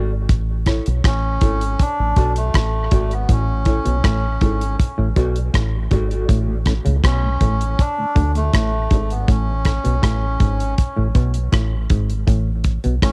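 Recorded at home on cassette in a small room, this hazy, laid-back dub reggae excerpt in A major moves at 80 BPM, swaying between A and D. A dry, tight 70s drum kit with hi-hat, kick and rim click sits up front beside a deep, punchy, foam-muted fingered bass. A reedy, breathy melodica carries the tune with dub echo over a clean, dark electric guitar colored by tremolo, which drops out at 6.2 seconds; a stringy, muted clav riff joins at 3.3 seconds, and a very quiet tonewheel organ with slow rotary swirl enters at 6.5 seconds.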